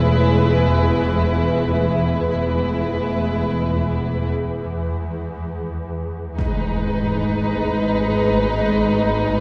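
Ominous and uneasy, this free-time suspense film cue in G# minor, cut from a longer piece, sets bowed string sections in a vast, echoing space: violins carry a soft-attacked melody and a smooth second line over background violas, a rich cello bass and a focused double bass beneath, all with vibrato. A deep, moody pad with chorus holds sustained chords while a swarming, detuned granular drone enters at 0.1 s and evolves in the background. After a break from 4.4 s, a huge, bright impact lands at 6.4 s as the harmony moves from E to G# minor.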